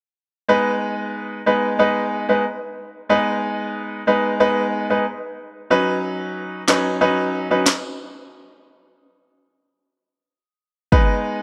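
This dancehall excerpt at 92 BPM in G# minor has a hypnotic, bouncy feel. A brilliant, polished concert grand piano carries the accompaniment from 0.5 seconds, its short-sustained chords sitting up front with deep bass as they move from G# minor to B add9 and back. An electronic afro-pop drum kit enters at 6.7 seconds with handclaps, a deep kick and a sharp snare before a break at 8.3 seconds, all set in a moderate plate reverb and a bright 1980s-style digital production.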